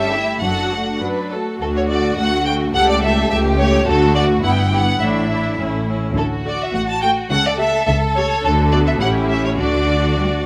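Cheerful and spirited, this quick classical-period movement for string orchestra moves at 105 BPM in 2/4 with a rubato feel, set in D major and cut from a longer piece. A smooth, even violin section carries the melody up front while a second, lush and expressive violin line sits beneath it, a focused viola section supplies accompaniment, and a smooth cello section pairs with the double basses, whose tone has a smooth top, on the bass, all bowed with vibrato. Close, detailed microphones and light reverb frame the ensemble as the harmony circles between D and A7 chords, touching Em/G and Asus4 along the way.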